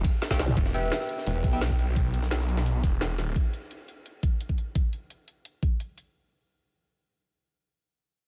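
Dark technical drum and bass cut from a longer piece, aggressive in mood, where a growling, detuned sawtooth bass with tube saturation and sidechain pumping snarls up front until 3.3 seconds over an overdriven, knocking electronic kick and a layered kit of woody snare, bright hats, ride, tambourine and toms, while a very quiet, gritty, pitched-up breakbeat kit sits underneath, a drum fill arrives at 0.2 seconds, a nasal band-passed chord stab with phaser and analog delay flickers briefly, and a chorused formant-sweep wobble bass wobbles in for a moment at 0.4 seconds.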